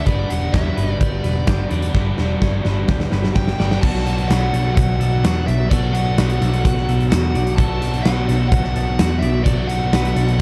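Guitars open this blissful, dreamy shoegaze and dream pop rock excerpt at 128 BPM in 4/4: a smooth, dark overdriven lead carries the melody through analog delay, a twangy clean guitar picks chorused arpeggios in the background, a warm overdriven guitar plays a riff washed in reverse reverb, and a thick fuzz guitar grinds a low distorted riff behind them, before a round, foam-muted vintage bass and a huge, up-front arena kit with a punchy kick, bright cymbals and a pumping hall sound enter at 0.1 s, the drums filling from 2.0 to 3.8 s as the harmony moves from G to Bm7 in a dry, shadowy mix.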